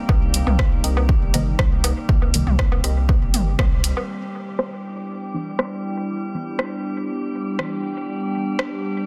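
Dub techno excerpt with a hypnotic, nocturnal mood, built on a warbling, nostalgic lo-fi pad and an eerie, metallic drone that both sustain with chorus, reverb and sidechain pumping, while a muted, filtered dub chord stab and a deep, mellow chord stab sit dark in the background with phaser and dub echo. A punchy, overdriven electronic kick sits up front beside a round, soft sub bass, overdriven electronic woodblock and toms, and a deep house kit of hi-hat and rim click with low-pass filtering and dub echo. After a band accent at 3.6 seconds, the kick, sub bass and woodblock drop out, and from 4.1 seconds the harmony moves from Cm7 to Em7 as a filter sweeps across the drums.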